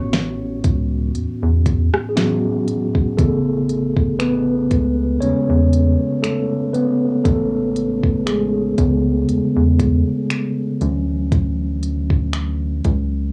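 A hazy, cassette-soaked home recording with light reverb and a small-room feel opens this dreamy, tender contemporary R&B fragment at a slow 59 BPM in A major, with a lightly swung sixteenth feel. A twangy, compressed clean electric guitar carries the melody with analog delay for only the first 2.1 seconds, while a mellow tine electric piano with tape coloring holds the chords and then takes a solo from 3.2 seconds, moving from Amaj9 to Dmaj9 at 10.8 seconds. Underneath, a rubbery, hollow square-wave bass with a dark, fast-attack pluck and a produced electronic drum kit of soft kick, fat snare, smooth hi-hat, rim clicks and finger snaps sit up front.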